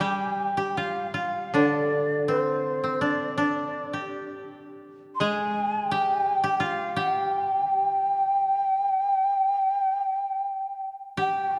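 Calm and austere, this brief passage of Japanese chamber music is cut from a longer piece, moving with an uneven, rubato feel in a four-beat metre. A mellow, hollow shakuhachi carries the melody in its upper register, its end-blown bamboo tone airy and touched with vibrato, each note opening with a crisp chiff that sounds both distant and up front. Beneath it, one koto plucked with fingerpicks plays a second line in the middle register, its tone dry, woody and gently warm. A second koto, brighter and also woody, supplies a low accompaniment until 7.4 seconds, after which the shakuhachi and the upper koto continue together to the end at 11.6 seconds. A church reverb with a long 3.4-second decay surrounds the performance, giving the spare, quiet ensemble a sense of stillness and space.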